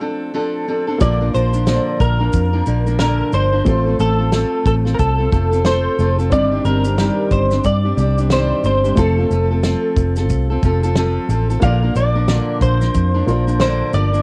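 Acoustic pop with a heartfelt, sunny mood opens on fingerpicked steel-string acoustic guitar and a woody upright piano with audible action noise, then at 1.0 s a clean, compressed electric guitar carries the melody through ensemble chorus over round, foam-muted electric bass and a small-room country drum kit with punchy kick, fat snare and shaker, all in a cozy home cassette recording with a booth-like ambience.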